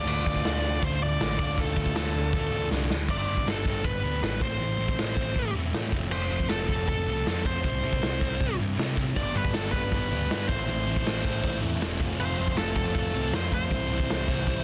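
Angry and aggressive, this punk rock cut drives at 158 BPM in a straight 4/4, with a bluesy, distorted lead guitar up front carrying the melody between A4 and D5 over a sludgy, dark guitar riff and an overdriven semi-hollow guitar that drops out at 2.9 s and returns at 9.2 s. A growly, punchy picked bass and a raw garage drum kit with a punchy kick, dark cymbals and a gritty, saturated edge push hard, and a drum fill at 2.7 s launches a cycle of G, Am, F and C from 3.1 s. The sound is dry, dense and heavily limited, with the drums placed close in a bright stone room.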